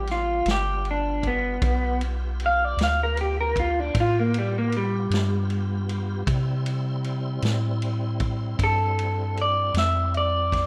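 Soulful and laid-back, this short slice of slow blues in 12/8 sits at 52 BPM in G mixolydian, moving from G7 to C at 6.3 seconds. A clean, dark electric guitar with a slightly broken-up, compressed lo-fi tone carries the solo up front over a round, deep analog bass and a vintage acoustic drum kit with punchy kick, medium-tuned snare and dark ride cymbal, entering at 0.1 seconds. Beneath them a lightly overdriven tonewheel organ holds full sustained chords through a slow rotary speaker and chorus vibrato, all set in light reverb and small room ambience with the rough feel of a home demo.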